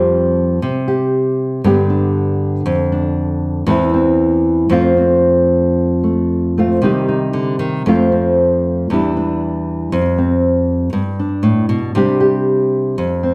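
A dark, warm production places a nylon-string guitar up front in a large studio room, with a moderate reverb of about 0.8 seconds and a short slapback echo on the guitar. This pastoral, peaceful folk excerpt is solo fingerstyle acoustic guitar, tuned to A4 = 441 Hz and set at 117 BPM in 4/4, though the feel is loose and rubato. The thumb-plucked, classical tone spans from E2 up to G4, and the guitar plays alone for the full 13.3 seconds. Its harmony moves through open, gently colored chords, starting on Fsus2 and passing through C5, G, Dm/F and Cmaj7/E before a shaded turn to Cm at 6.8 seconds. From there it drifts through F, Em7, Fsus2 and G, coming to rest on Csus2 at 12.0 seconds.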